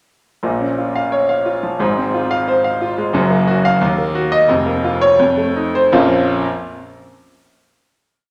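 Agitated and passionate, this short virtuoso piano study in B-flat minor moves at 80-90 BPM in 2/4 with a flexible rubato feel, its solo concert grand sweeping through arpeggios from deep bass up to F5 over a dark progression that resolves on a final B-flat minor chord at 5.9 seconds. The piano sounds clear, up front and vintage, with a smooth touch, and it plays from 0.4 to 6.5 seconds, tuned slightly high to A4 = 441 Hz. A wet recital hall reverb lets that closing chord ring out.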